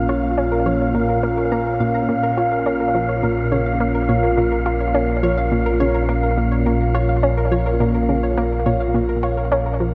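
A sweeping, resonant pad opens this hypnotic stretch of ambient, sequencer-driven space music. It sounds from 0.0 seconds alongside a deep sine sub bass holding Bb1 and an airy, wind-like tuned noise texture breathing on F5. The pad sits up front, its detuned sawtooth chords evolving through a slow attack and filter swell, coloured by chorus, phaser and shimmer reverb over a single Bb minor chord. At 0.1 seconds two plucked synths join: a nasal, wave-folded analog pluck plays a riff in the low-middle register, while a soft, gentle pluck with a dark sub-octave edge traces arpeggios higher up, both carried on chorus, delay and shimmer reverb. The tempo is a straight 105 BPM in 4/4, tuned to A4 = 442 Hz, and a moderate plate reverb lends an expansive sense of space to this passage cut from a longer piece.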